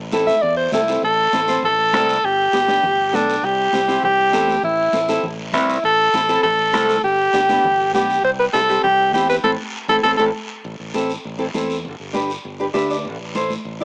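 An up-front alto saxophone carries the melody in this fiery, passionate cumbia, its pop-style tone shimmering with vibrato and a cassette-tape grit as it takes a brief solo at the outset before leading the tune until 10.2 seconds. Set at 200 BPM in a straight 4/4 in A minor, the music cycles through Am, G and C. A fingerpicked nylon-string guitar with fresh strings supplies classical-style accompaniment, also colored by cassette tape, and adds a short fill at 12.6 seconds. Underneath, a punchy, direct fingered electric bass anchors the low end, while high-tuned congas struck with hard hands sit in the background beside a raspy guiro that sounds distant, as if in a large room. The band hits an accent at 9.4 seconds, and the whole take has a home-recorded cassette character, a small-speaker sound and a moderate spring reverb, cut from a longer piece.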